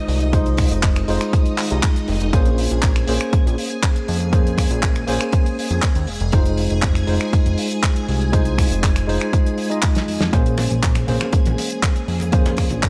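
A straight 4/4 groove at 120 BPM, built on a punchy, overdriven electronic kick up front and a dry, damped 70s drum kit of snaps, handclaps, hi-hat and snare, drives this sleek, sensual nu-disco excerpt in Bb minor, where a fat, detuned analog bass holds the low end under a worn, slightly out-of-tune tine electric piano with sidechain pumping and slapback echo, a lush string machine ensemble with chorus swells into sustained Fm7 and Bbm9 chords, and, after a drum fill at 10.0 seconds, thick-skinned congas slip into the background at 10.3 seconds.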